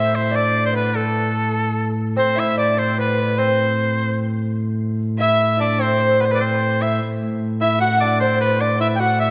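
A straight-feel 6/8 medieval dance at 99 BPM in A dorian, mysterious yet driving, led by a bright, up-front shawm singing a smooth-topped folk melody with vibrato, while a dark, woody bowed fiddle with light vibrato and portamento and a delicate, fingerpicked gut-strung lute trace second lines in the background over a light, sparkling pipe-organ drone on A2 with flute stops, all wrapped in a wet concert hall reverb in this short cut from a longer piece.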